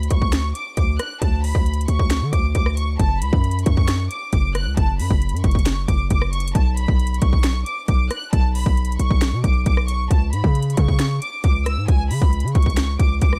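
Hip hop trap in a menacing half-time feel, this fragment of a longer piece pairs a hushed, bowed studio violin section playing the high melody with light vibrato and a smooth top against a punchy, heavy 808-style bass with a fast attack and a noise layer, while an up-front electronic trap kit hits hard with a clipped kick, sharp snare, metallic hi-hats, rim clicks and finger snaps, all in a dry, dark mix moving through Dmaj7(no3), F#5, Bsus2 and C#5.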